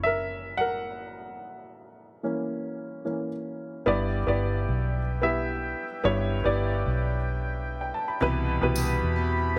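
Piano-driven pop in a straight four, this short section cut from a longer piece carries an earnest, bittersweet mood over a steady pulse. A woody, slightly detuned upright piano sits up front with short sustain as the main accompaniment, moving from F#7 to G6 and then Cmaj7. Beneath it, a vintage foam-muted electric bass played with the fingers adds a dark, round, amped low end that is also placed up front. At 3.9 seconds, a close-miked woodwind section enters with clear, tight sustained chords in a classical style, touched by light vibrato. A full-bodied picked dreadnought acoustic guitar riff comes in at 8.2 seconds in the background, and a jingly, close and dry tambourine briefly sounds at 8.8 seconds. Moderate studio reverb gives the parts a sense of space.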